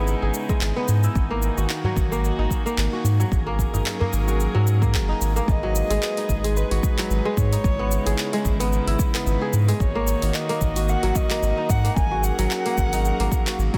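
Organic downtempo in G# minor at 111 BPM with a gentle 16th-note swing, hypnotic and meditative, as a fingerpicked, ringing kora arpeggiates through a delay over sustained sul tasto chamber strings and a round, up-front sine sub bass, both pumping against the deep electronic kick and a layered deep house kit of handclaps, dark hi-hats and shaker. A breathy, wind-like noise texture hovers very quietly at the start, a small, dry udu appears from 1.8 to 4.1 seconds, and after a short break the texture gives way at 5.5 seconds to a dark, intimate kamancheh melody with light vibrato, portamento and an airy bow, echoed through digital delay. The chords circle over a G# pedal from C#m7/G# through D#m and F#6 voicings, all in a dense, heavily limited mix with light reverb and studio ambience.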